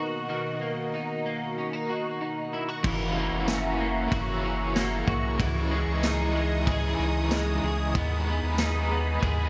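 Drenched in a huge ambient reverb with a faint mains hum, this hazy, haunting dream pop excerpt at 94 BPM opens with a swirling, detuned phased analog pad and a slightly broken-up electric guitar picking arpeggios through tape echo and shimmer reverb over Bmaj7, before a bright, overdriven garage guitar with tremolo, a round sine sub bass and a vintage drum kit with dark cymbals, punchy kick and tambourine join at 2.8 s for a progression through F#7, C#madd9 and G#m/D#.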